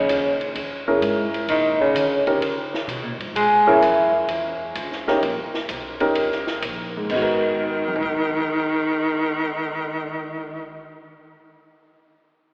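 This short cut from a longer piece has a smoky AM-radio sound, set in the long, wet reverb of a church or concert hall. It's small-group jazz in a swinging bop vein, where a metallic, ringing vibraphone played with medium mallets carries the melody with fast motor vibrato. Beside it, a raspy, growling baritone saxophone sits up front on a second line, gritty with subtone and vibrato. Both drop out at 4.1 seconds and return together at 7.1 seconds, where the harmony settles onto a G#m9 chord. A woody pizzicato upright bass runs under the whole passage, and a compact cocktail kit with dark cymbals, a high-tuned snare and a punchy kick plays until 8.2 seconds. From 0.9 seconds a natural-sounding baby grand piano fills in the accompaniment.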